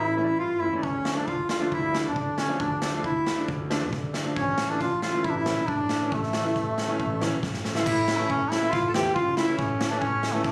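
Klezmer with a bittersweet yet festive mood, cut from a longer piece, where a warm, vibrato-laden duduk carries the folk-style melody up front while a reedy, dry-tuned accordion plays a close second line. A rich, softly bowed double bass and a clear, woody upright piano fill in beneath, and a street-band drum kit with a boomy kick and medium-tuned snare joins at 0.8 seconds. The tempo gradually speeds up throughout, a drum fill at 7.4 seconds leads into a new section, and the phone-in-the-room sound carries a club reverb.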